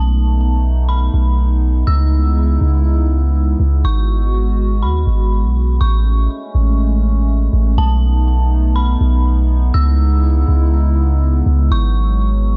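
Dreamy and floating, this atmospheric cloud-rap excerpt drifts along in a half-time feel, cut from a longer piece. A dark, detuned synth bell carries the melody high up, its eerie, inharmonic FM tone softened by chorus, a low-pass filter and delay, sitting quietly back in the mix. Beneath it, a hollow, flute-like pad holds sustained chords with a slow attack and long release, its detuned shimmer thickened by chorus. A long, sine-based 808-style bass sits deep and up front, striking quickly and then decaying in a mellow rumble. All three parts play throughout, moving through a gentle cycle of seventh chords, with the progression shifting to a new passage at 5.8 seconds, all wrapped in a digital ambience.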